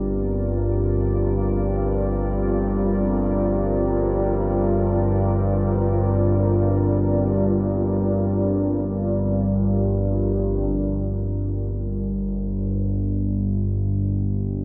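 A cavernous, heavily reverberant space frames this desolate dark ambient drone in free time, where a warbling, detuned analog drone sits up front with chorus across the whole 14.6 seconds while a deep, moody pad with chorus and built-in reverb fades in on a sustained G minor chord before dropping out at 10.7 seconds, leaving the drone alone.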